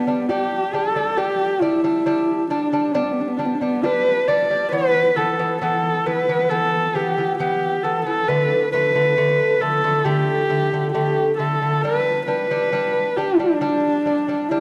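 Proud and vast, this Mongolian folk passage moves at a slow 68 BPM in 4/4 in G gong mode, cut from a longer piece and cycling through G5, E5 and D5 chords before returning to G5. Up front, a single bowed horsehead fiddle carries the melody with a husky, woody tone, leaning on vibrato and portamento, while a fingerpicked lute with gut double strings lays delicate arpeggios beneath it from 0.0 to 14.6 seconds. A wet scoring-stage reverb and a dark, warm production give the pair a spacious, brooding depth.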